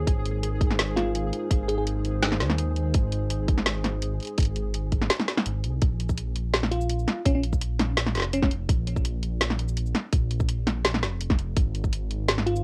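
A dark analog pad and a pulsing gated texture open this tense, heavy half-time drum and bass excerpt, the pad holding moody, wave-folded sustained chords with subtle chorus, sidechain pumping and cassette tape color, while the faint texture sits in the background with chorus and its own reverb. Beneath them a deep, rumbling detuned saw bass sits up front and continues to the end, its beating, sustained tone dark and heavy. From 0.1 seconds an up-front electronic drum kit with a woody snare, bright hats and shaker joins a tight electronic kick, both layered, produced and re-recorded in a small room with a cassette tape grit. A bell-like FM electric piano adds sparkling, decaying melodic fragments at 1.0 seconds and again at 6.7 seconds, colored by chorus, phaser and tape echo. The pad and texture drop out at 5.8 seconds, leaving bass, drums and piano in a dry, close sound that carries a home cassette character.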